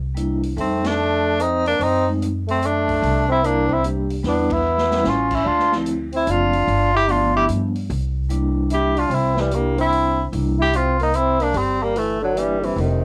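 Swinging and warm, this excerpt of small-group swing and bop jazz moves at 148 BPM in a lilting 3/4 in C mixolydian, with a scooped, lightly vibrato-tinged tenor saxophone carrying the melody up front through a cassette-tape haze, a bright, forceful trombone on the second line, a woody, growly pizzicato upright bass with tube saturation, airy, ringing vibraphone accompaniment shimmering with fast motor vibrato, and a big-band drum kit with a punchy kick and cassette-tape grit, the band hitting accents at 0.8 and 4.4 seconds before a short drum fill at 4.6 seconds, captured as a home cassette recording with moderate studio reverb.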